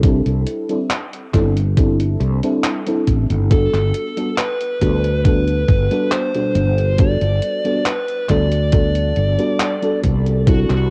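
A thumpy electronic kick drum sets a slow, straight pulse in four alongside a detuned 8-bit drum machine whose handclaps and hi-hat sit low in the mix with a tape-soaked, sampler-style character. This nostalgic, dreamy vaporwave excerpt is cut from a longer piece and moves from C6 to Gmaj7. A growly fretless electric bass sits up front beneath a lush FM electric piano layered with a soft pad; the keys are dark and full-bodied, with a fast attack and decaying tone, bathed in chorus and analog delay. At 3.5 seconds a smooth, overdriven lead guitar enters with the melody, its picked, shadowy tone roughened by 12-bit sampler grit and trailed by tape echo. The whole piece carries the hazy sound of a home cassette recording with light reverb, and the drums sound as if they were re-recorded in a small room.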